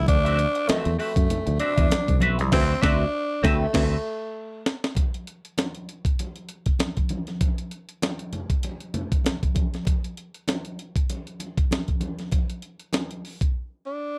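Funk at 98 BPM with a strutting, playful swing, this dry, close 1970s-style recording opens on a D13 chord with a raspy, growling tenor saxophone lead, a punchy fingered electric bass and a dark, clean electric guitar through wah; bass and guitar stop at 4.0 seconds and the saxophone soon after, as a band accent and drum fill give way to a stretch carried by the gritty, pitched-up breakbeat drum kit with its thumpy kick and by soft-handed, distant congas, until the kit breaks off at 13.5 seconds and the saxophone returns briefly at 13.9 seconds.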